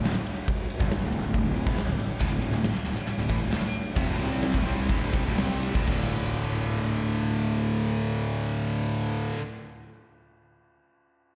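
Driving and heavy, this hard rock excerpt in straight 4/4 on a D5 chord moves at 119-139 BPM and slows between 2.2 and 5.9 seconds, with a growly, fuzz-drenched picked bass and a huge, up-front arena drum kit of bright crash and ride cymbals, a medium-tuned snare and a punchy kick pounding until 6.0 seconds, while three guitars churn the riff: a very quiet crunchy overdriven part, a bright distorted one set back with slapback echo, and, arriving as the slowdown begins, a double-tracked, scooped high-gain guitar with its own slapback, all captured as a live gig through the venue's PA in a recital hall.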